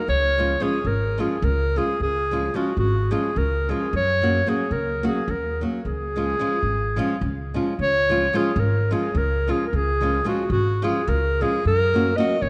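A smooth-topped, soft-attack clarinet sings an exuberant, virtuosic Balkan wedding-band melody in 7/8 with a touch of tape echo, over a small fingerpicked nylon-string guitar and a woody, thumpy pizzicato upright bass, all three close up in a moderate recital-hall reverb, in this warm excerpt cut from a longer piece.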